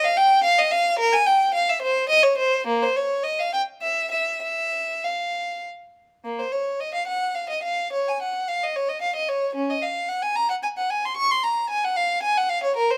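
A single bowed violin sits up front, its tone rich and focused with a smooth top and a singing vibrato, carrying this grave, introspective baroque-style suite movement alone. The playing moves in a flexible, rubato triple metre, stating a passage and then returning to it at 6.2 seconds in this brief fragment from a longer piece. A light reverb gives the solo line a touch of space.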